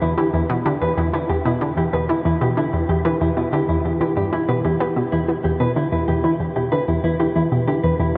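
Hypnotic and mysterious, this brief cut from a longer piece of ambient, sequencer-driven space music sets an up-front analog pluck riff, round and nasal with a wave-folded, filter-plucked snap and chorus-thickened echoes, beneath a dark, clean, fingered electric guitar tracing delayed arpeggios over a single E minor chord, all drifting through a huge reverb with a dreamy cassette-tape haze.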